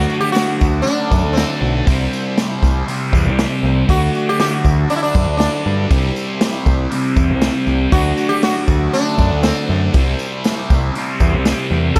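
Hypnotic and trippy, this psychedelic rock excerpt, cut from a longer piece, moves at 119 BPM in a straight 4/4, circling between D and C chords roughly every two seconds. An up-front, shimmering sitar carries the melody, its plucked, buzzing tone ringing with sympathetic strings and trailed by analog delay. Beneath it, a thick, double-tracked fuzz guitar drives the riff through distortion, phaser and delay, while a growling, overdriven picked electric bass sits just as far forward. A vintage combo organ holds sustained chords in the background, treated with lush chorus, and a jingly, band-limited tambourine enters at 0.1 seconds, also set back in the mix. The acoustic drum kit joins at 0.4 seconds with a punchy kick, a medium-tuned snare, hi-hat and a rolled-off top, all within an echo-heavy mix finished with light studio reverb.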